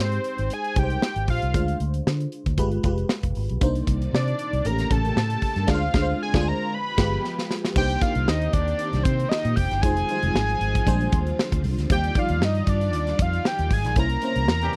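Polished 1980s jazz-funk pop in C minor at 116 BPM with a lightly swung, nocturnal and bittersweet feel, where a fat, detuned analog synth lead with chorus and slapback echo carries the melody up front over glassy, bell-like FM electric piano chords, a dark, foam-muted fingered electric bass and a punchy, up-front studio drum kit, while a shimmering string machine joins in the background at 3.6 s, band accents and a drum fill mark the turn into the second section, and a brief burst from a roomy horn section arrives at 14.6 s in the dry, close studio sound.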